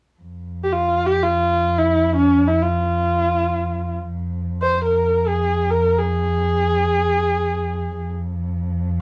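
A rich bowed cello enters at 0.2 s, holding a low F drone with vibrato and gliding portamento. At 0.6 s a warm kamancheh joins above it, soft in attack and expressive, and sings a soulful, longing melody in F avaz esfahan, free in time and tuned to A4 = 438 Hz. Both bowed players sit up front yet sound slightly distant in a light reverb, and the dark, warm production gives this short fragment of a longer Persian piece a gentle glow.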